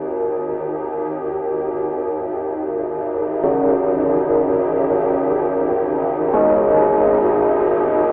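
Carillon bells enter at 3.4 seconds with soft, bronze arpeggios, their mellow, ringing tone carrying a minor-third overtone and trailing into a diffuse ambient delay. Beneath them, a swarming drone holds from the start, low and detuned, its granular sine texture evolving with a tense, sustained presence over a G#sus4 harmony. This unsettling dark ambient drone fragment drifts in free time, steeped in a cathedral-like reverb yet filtered through a thin, telephone-like sound.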